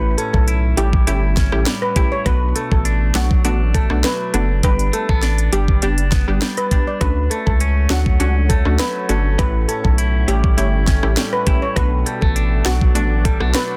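Dancehall with a summery, sunny mood at 101 BPM in a straight 4/4, heard in a short section cut from a longer piece. An electronic island pop drum kit sits up front with a knocking kick, sharp snare, smooth hats and rim clicks, alongside a thick, saturated sine sub bass that is just as prominent. Punchy, detuned chord stabs with a vintage, warbling chorus and filter pluck sketch the harmony, while a clean, twangy electric guitar plays bright, compressed arpeggios. A shimmering, metallic steel pan carries the melody, played with hard rubber sticks and trailed by tape echo. At 7.8 seconds a deep, moody sawtooth pad enters far in the background with chorus and reverb, as the chords cycle through A7, Bm7, G and Dmaj7 in a dense, heavily limited modern master.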